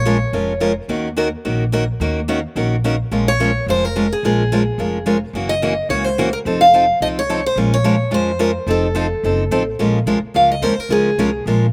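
A fiery jazz manouche cut in Bb minor opens with a brief picked steel-string guitar phrase over a woody, thumpy pizzicato upright bass on gut strings, with a second picked guitar joining at 0.1 seconds to carry the accompaniment at a swinging 216 BPM. The lead guitar, carrying a slapback echo, returns with the melody at 3.3 seconds over changes moving through Bbm7, Ebm7, Gb7, F7 and F7b9, and a steel-string guitar solo follows from 9.8 seconds. Both guitars sound bright and up front, with fresh strings and audible finger squeak, in a dry outdoor recording with little reverb.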